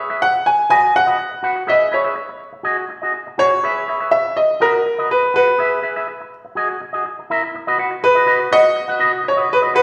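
A sultry, danceable disco cut, taken from a longer piece, moves at 123 BPM in a straight 4/4 feel. A clear baby grand piano carries the melody up front, its tone natural and its notes short in sustain. Beside it, a clean, picked electric guitar with an envelope filter plays accompaniment, twangy and set close, with spring reverb on its sound. Both parts play throughout the roughly ten seconds, over chords that move from B6/F# through C#m7 and D#madd11/F# to Bmaj7/F# and E/G#, reaching D#5 before settling on B/F# as a new section opens at 7.5 seconds. The band plays live together in a large studio with a wet, lingering reverb that fills the room around them.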